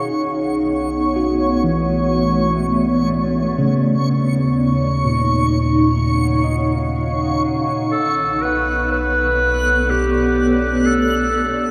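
A brilliant, vintage-toned solo clarinet enters up front at 7.9 s with a classical-style melody bathed in shimmer reverb and diffuse delay, floating over a spacious, reflective ambient passage cut from a longer piece. Beneath it, a cloudy, detuned granular pad holds evolving Bm9 and D#m9 chords with shimmer, while a clean tine electric piano fades out through its arpeggios and a deep, round sub bass fades in. A reversed, dreamy swelling texture hovers high above, all set in a huge, wet reverb with a dark production.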